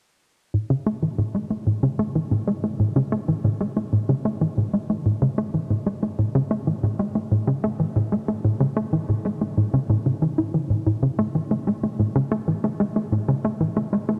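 A hollow square-wave pluck enters at 0.5 seconds, playing a bouncy riff between A2 and E4 in A major. This is luminous, cosmic ambient music at 93 BPM in a straight 4/4. The pluck sits up front, with a fast attack, short decay and a noise layer. Chorus and analog delay thicken it, and a filter sweep moves across the arpeggiated line. Everything floats in a wet, huge reverb with a 7.8-second tail, and a cassette-tape character colors the sound. The riff carries the whole fragment, which is cut from a longer piece and ends at 14.2 seconds.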